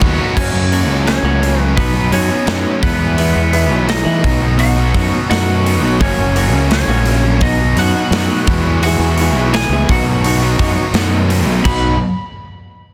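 A straight 4/4 pulse at 85 BPM drives this bittersweet, anthemic quiet-loud alternative rock passage in B major, with a big rock drum kit up front, its punchy kick, medium-tuned snare and bright cymbals ringing in a big room, beside a growly, fingered fuzz bass with overdrive. Crunchy overdriven and thick distorted fuzz guitars play riffs in the background while a lo-fi, compressed guitar through a small old amp picks arpeggios from 0.4 s, as the chords cycle through F#, B, E and B. Over the top, a twangy, lightly driven lead guitar carries the melody through tape echo, in a dense, heavily limited modern mix with little reverb, cut from a longer piece.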